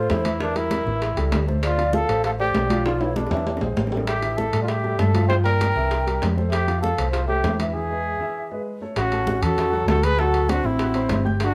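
Afro-Cuban jazz at a brisk 196 BPM in straight 4/4, this short cut from a longer piece feels lively and sophisticated, played by a band together in one room with light reverb. A breathy trumpet carries the melody up front, its whispered, intimate tone shaded with light vibrato, soft attacks and scooped notes, while a mellow concert flute with a hollow, tongued sound and vibrato sings a second line alongside it. A grand piano supplies accompaniment with audible action noise, and a dark, round, punchy hollow-body electric bass sits prominently under the harmony, moving through chords such as Dm7, Bm7b5, Fmaj9 and D9. Congas with a bright, high-tuned thin skin, tight, saturated bongos and ringing metal-shell timbales join at 0.1 seconds, with the congas and bongos staying in the background. A drum fill arrives at 2.9 seconds and a break lands at 7.7 seconds before the tune moves into a new section at 9.0 seconds.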